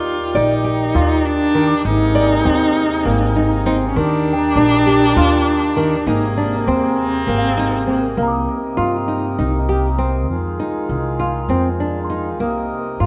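In a straight, uneven 7/8, this pensive yet urgent chamber piece, cut from a longer work, sets a fingerpicked classical nylon-string guitar arpeggiating over sustained chords from a reedy, breathing, close-miked harmonium and an up-front, woody pizzicato upright bass. A warm, expressive bowed viola sings a second line with vibrato and portamento until 8.2 seconds, when the harmony shifts into darker minor-seventh chords, while a small, bell-like celesta adds delicate, sweet texture in the background from 1.7 seconds. The ensemble sits in a moderate scoring-stage reverb, and the whole recording carries the worn, warbling pitch drift of old cassette tape.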